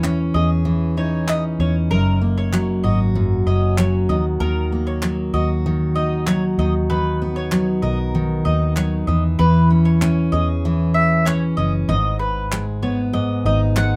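A picked steel-string acoustic guitar, up front with a full-bodied jumbo tone and audible finger squeak, opens this carefree, sunny acoustic pop excerpt at 96 BPM alongside a mellow mandolin playing arpeggios, a dark, foam-muted vintage electric bass and crisp, close group handclaps. The chords move from C#madd9/E through F#6, D#m and Bmaj7/D# before shifting to G#m as a new section arrives at 11.9 seconds. A moderate small-room reverb gives the whole a snug, intimate sound.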